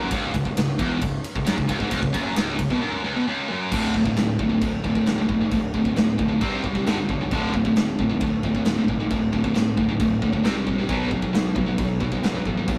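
A double-tracked, high-gain distorted guitar riff and a growly, fuzz-overdriven picked bass open this dark, heavy metal excerpt at a straight 134 BPM in 4/4, joined at 0.1 seconds by an up-front acoustic rock kit with a punchy kick, medium-tuned snare and bright crash and ride cymbals, before the riff settles into power chords on D5, C5 and G5 from 3.7 seconds, all captured in a rough, tube-saturated rehearsal-room recording with a short, wet booth ambience.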